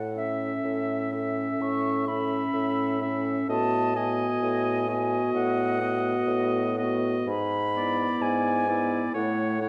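A silver concert flute carries an airy, straight-toned melody over a mellow, up-front bassoon bass from the start, joined at 0.2 seconds by a clear oboe with light vibrato on a second line, a dark, distant French horn and a vintage-toned clarinet in the background, in a lyrical, warm, slow romantic classical movement for wind quintet at 64 BPM in A major with a rubato 4/4 feel, cut from a longer piece and heard in a reverberant recital hall.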